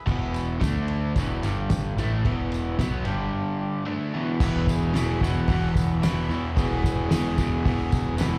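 Rowdy and swaggering, this garage rock clip from a live gig heard through the venue's PA is driven by a bright, double-tracked, overdriven guitar riff with slapback echo and a punchy fuzz-picked bass, both up front. Alongside them sit a cloth-damped, thuddy drum kit with a fat snare and dark cymbals, sustained chords from a vintage, buzzy combo organ, and a jingly tambourine in the background. At 4.5 seconds a second, very quiet and clean combo organ adds a melody wrapped in spring reverb and slapback echo.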